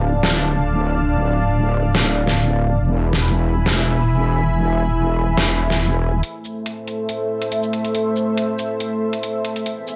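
A lush, detuned unison pad with phaser shimmer and a touch of 12-bit sampler grit opens this menacing, chaotic heavy wobble dubstep fragment in A harmonic minor, joined at once by a saturated, overdriven wobble bass growling low over Dm and E chords at 140 BPM in a half-time feel. A deep-snared electronic drum kit with hi-hat and shaker enters at 0.2 seconds, its layered hits carrying the air of a large room. At 6.2 seconds the bass stops and the harmony moves to Am as a build-up begins, with a filter sweep running across the pad until the cut at 10.0 seconds.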